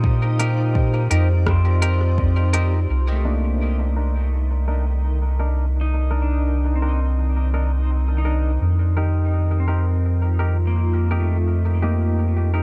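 Ambient dub with a meditative, spacious mood and a lightly swung groove, cut from a longer piece. A soft, round sub bass sits up front, lightly saturated, under a deep, dark pad of sustained chords that stays in the background with chorus and its own reverb. A pedal steel guitar, played with fingerpicks and slide, spins filtered arpeggios into tape echo. From 0.4 seconds a clean, bright semi-hollow guitar adds tremolo-tinged stabs that trail off in dub echo. A deep, tape-warm electronic kick and a crisp, filtered kit of hi-hat and rim click play only briefly at the start, with the kit, sent through dub echo, stopping by 2.7 seconds. A reversed, granular texture glimmers behind it all, and the echo-heavy, dry-roomed mix drifts from an F9sus4 chord to Cm9 at 2.9 seconds and back again.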